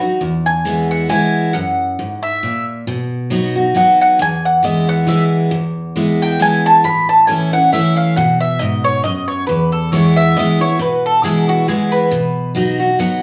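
A lilting waltz feel at 136 BPM in 3/4, with a light swing on the eighth notes, carries this joyful, virtuosic bluegrass excerpt in E major. A picked steel-string acoustic guitar opens the track at 0.0 seconds and holds the accompaniment throughout, its bright, full-bodied dreadnought tone sitting up front, complete with audible finger squeak. The mandolin enters at 0.5 seconds to take the melody, its woody double strings ringing clearly in the foreground. The harmony moves from E through F#, B and A, with the music shifting into a new section at 5.5 seconds before the clip cuts off at 13.2 seconds. The band plays live together in one large studio, a generous reverb wraps the sound, and the recording itself has a soft, rounded top end.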